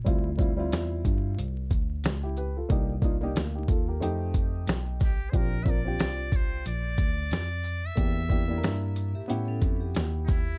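A dark, warm production with vinyl crackle and little reverb frames this relaxed, cool jazz-hop excerpt, built on a gritty, compressed soul sampler-style drum kit with a thumpy kick, sitting up front beside a worn, slightly out-of-tune tine electric piano carrying the bass line. A mellow, vintage-toned grand piano with short sustain and plate reverb supplies the chords over a swung 16th feel, and at 5.0 seconds a buzzy, thin trumpet with a metal mute takes a jazz-style solo melody through tape echo, full of scooped notes. At 9.1 seconds a bright, ringing vibraphone struck with hard mallets, motor off, adds a close-miked second line.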